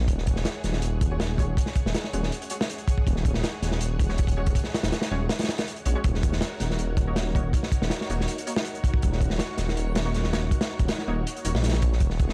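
A crunchy breakbeat kit sits up front in this frenetic, dark drum and bass and jungle excerpt, its saturated, gritty hits built from a tight kick, a medium-tuned snare and hi-hat, with a rolled-off top and a mid-forward studio-room character. Beneath it, a thick, menacing detuned saw bass with a beating, sustained tone holds the low end from the start. In the background, a silky vintage string machine with ensemble chorus lays down slow-attack chords that move from Gbsus2 over Eb to Ebm7 at 6.0 seconds. From 1.1 seconds, a bold, punchy orchestra-hit-like synth stab cuts in, layered and bright with ring modulation, a filter sweep, built-in reverb and dub echo. At 7.9 seconds, a very quiet reversed, dreamy granular texture swells in high above the rest, all within a dark production and small room ambience.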